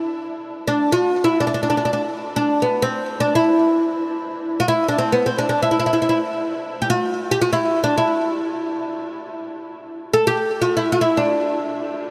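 Unmeasured and free in time, this hypnotic, longing Persian passage is a 12-second fragment of a longer piece carried by a solo oud from 0.0 s to 12.0 s. The fretless, plectrum-plucked oud sits up front with a bright, woody tone from its doubled strings, staying within a narrow middle register and touched with delay. A huge ambient reverb soaks the dreamy mix, letting each phrase hang in the air long after it is played.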